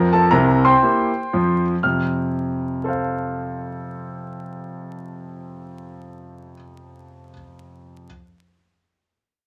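Exuberant and swinging, this short cut from a longer stride jazz piece features a solo grand piano, clear, intimate and up front with its action noise audible, moving from C7 to F at 1.8 seconds inside a small, reverberant room under a layer of vinyl crackle.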